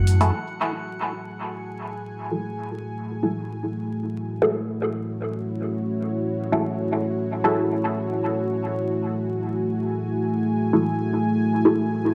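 A straight 4/4 pulse at 114 BPM frames this nocturnal, cavernous techno excerpt in F# minor, tuned slightly sharp to A4 = 441 Hz. A dark analog pad holds sustained chords from the very start, its detuned sawtooth and triangle tones thickened by a sub octave and a chorus effect, with a slow attack and long release giving it a moody, full-bodied weight. At 0.2 seconds a filtered dub chord stab enters, its muted, mellow voice built from detuned sawtooth and square waves with a fast attack and short decay, colored by phaser and a dub echo. Both parts sit up front and evolve over the whole stretch, resting on a single F#m9 chord from 0.3 seconds to the end at 12.1 seconds. A moderate digital room reverb lends a cavernous ambience, while vinyl crackle adds a grainy surface to the recording.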